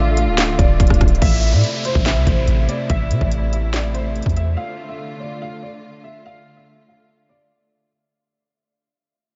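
A dim, softly rounded mix sits in light reverb with its top end rolled off, and this short cut from a longer track fades out from 1.2 seconds onward. The mood is menacing and brooding: trap-style hip hop in a half-time feel, shifting between minor chords. A dark baby grand piano carries a mellow, intimate melody high in its register, with audible action noise, short sustain, analog chorus and tape echo. Beneath it, a muted studio string section holds veiled, con sordino bowed chords with vibrato and a smooth top. Up front, a deep, boomy 808-style bass with a sine body, a noise layer, a fast attack and a decaying tail pairs with an electronic trap kit that enters at 0.2 seconds, bringing a hard-clipped kick, sharp snare, crisp hats, handclaps and rim clicks. An electronic downlifter runs through the middle stretch before the bass, drums and effect all fall away by 4.6 seconds, leaving the piano and strings to finish.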